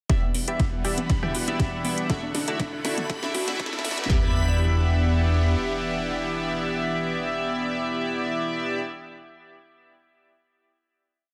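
A dense, heavily limited modern master in a moderate digital room carries this driving, expansive progressive house piece, where a punchy four-on-the-floor kick and cracking snare with metallic hats and rim clicks, overdriven electronic congas and toms in the background, and a deep, galloping analog bass push a build with filter sweeps on the soft pluck arpeggios and glossy, up-front chorused polysynth stabs, while a lush supersaw pad with phaser, a reversed, dreamy swelling texture on a held high note, and riser and impact effects lead into a final Em7 chord at 4.1 seconds.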